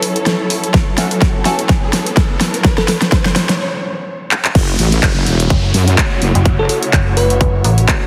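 Heavily compressed and radio-loud with a lush hall reverb, this aggressive, gritty bass house excerpt in F# minor at 126 BPM opens on a build-up of dark, bowed string sections pumping beneath an electronic riser and downlifter, a nasal, band-passed chord stab, and an overdriven big-room kit with a huge snare, joined at 0.7 s by a punchy, up-front kick. After a short break, the drop lands at 4.6 s with a heavy, detuned wobble bass and then a metallic FM bass, both saturated and pumping. A sparkling, bell-like FM electric piano adds brief chorused touches in the background.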